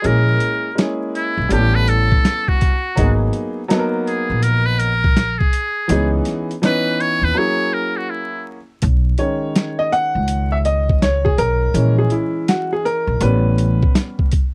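Dry, close and 1970s-style, with a bed of vinyl crackle, this smooth jazz-hop excerpt swings over a gritty, pitched-down boom bap sampler kit with a thumpy kick, while a woody pizzicato upright bass sits up front. A buzzy, thin trumpet with a metal mute carries the melody with vibrato and scooped notes, reaching a break at 7.4 seconds and falling silent at 8.5 seconds, as a warm upright piano with audible action noise and long sustain accompanies throughout. The piano then takes its own solo from 8.8 seconds.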